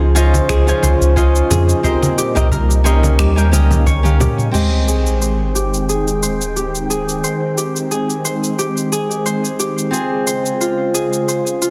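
Sunset chillout at 89 BPM in Ab major, smooth and relaxed, with a gentle swing on the sixteenths, cut from a longer piece. A silky string machine holds sustained chords through phaser and ensemble chorus, while a ringing Celtic harp plays arpeggios through a low-pass filter and tape echo, picking up a filter sweep from 4.5 s onward. A dark, fingerpicked flamenco guitar adds accompaniment with its own tape echo, and a round, up-front sine sub bass anchors the opening until about 4.3 s. Rhythm comes from a tape-toned R&B drum kit of finger snaps, shaker, toms and crash, with soft clipping on the snare, joined early by low-tuned, thick-skinned congas and an overdriven, dry electronic kick in the background, with a drum fill leading into a sub drop impact at 4.5 s. Chords drift from Dbmaj9 through Cm7 and Eb7 to a long Abmaj7, closing on Dbmaj7, all set in light digital ambience with a dense, heavily limited modern master.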